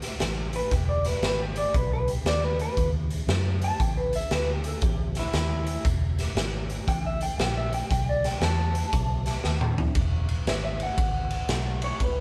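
A dark, round, foam-muted bass and a raw garage drum kit, with a punchy kick and saturated, rolled-off cymbals up front in a bright, pumping stone room, open this soulful, gritty electric blues shuffle at 117 BPM with a swung eighth-note feel, joined from the start by a clean electric guitar solo. From 0.6 s a slightly broken-up, compressed electric guitar adds a picked second line in its upper register over changes that move through E, B, A5 and B7 before returning to E at 10.0 s. A drum fill at 9.4 s marks the turn, and the whole band sounds live in one room with moderate reverb, in a section cut from a longer piece.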